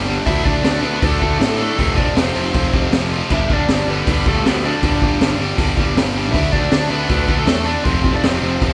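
Rowdy and energetic, this short excerpt of straight-ahead punk rock at 158 BPM in G mixolydian has a double-tracked, overdriven rhythm guitar pounding out the riff over a growly fuzz-drenched picked bass from the start, joined at 0.3 seconds by a biting, bright lead guitar melody and an up-front garage drum kit with a high-tuned snare, punchy kick and gritty, pumping small-room saturation, all played live in one room with light reverb over chords moving through D5, F and G.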